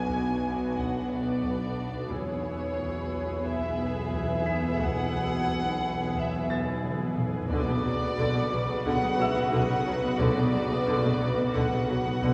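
Mysterious and tense, this cinematic suspense cue moves at 89 BPM in B dorian, with warm, sul tasto violin sections carrying the melody and a second line over dark viola, cello and double bass sections, a nasal, detuned drone, a clear, short-sustained grand piano texture high up, and very quiet, dry taiko that adds a fill at 6.8 seconds, all set back in a reverberant hall as the chords move from Bm to E and settle on Bmadd9.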